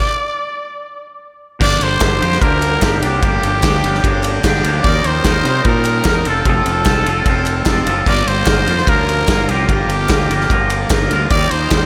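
A straight, restless 4/4 indie rock groove opens with just a loose, roomy drum kit and a raspy, growling trumpet melody with slapback echo, before a double-tracked, twangy electric guitar riff and a fuzzy, overdriven fingered bass enter at 1.6 seconds over moody Gm7, Ebadd9 and F chords, and very quiet, crisp group handclaps join at 2.0 seconds, the whole piece set in a big, arena-like concert hall reverb as a cut from a longer work.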